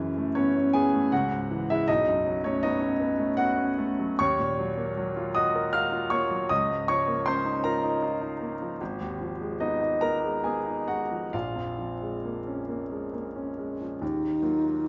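Wistful and hazy, this impressionist classical duo in a rubato 3/4 opens with a clear, intimate grand piano laying down rich extended chords, its action noise audible under a moderate stage reverb with a softened top end, until a mellow, hollow alto flute with airy vibrato enters up front at 14.0 s on a single tongued note just before this fragment of a longer piece breaks off.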